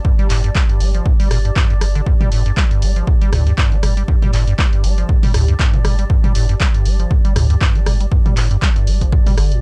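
A squelchy, resonant square-wave acid bass with tube saturation and a filter sweep drives this raw acid house excerpt at 119 BPM in 4/4 with a swung 16th-note feel, over an up-front punchy electronic kick re-recorded in a small room, an analog drum machine of handclaps, hi-hat, rim click and toms entering at 0.2 s, a deep, round sine sub bass with sidechain pumping from 0.3 s, and a mellow, cloudy granular pad carrying its own reverb and sidechain pumping up high, the harmony resting on G5 in a dry, gritty cassette-tape recording.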